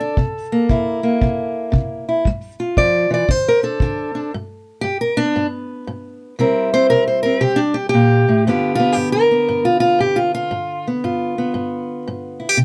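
A small room gives this recording a modest half-second of reverb, and the close, detailed microphones catch every finger squeak on the strings. It is a soulful, swaggering piece of acoustic country blues in G mixolydian, cut from a longer performance, moving at 116 BPM in 4/4 with a 64% swing on the eighth notes. A fingerpicked steel-string acoustic guitar with a boxy, parlour-sized tone sits up front and carries the melody, ranging from G2 to D5 over chords such as C7, Dmadd11, G and G7. A dark, tight kick drum with a rolled-off top, played with brushes, sits lower in the mix from 0.2 to 4.0 seconds. From 4.3 seconds the guitar takes a solo over the rest of the clip.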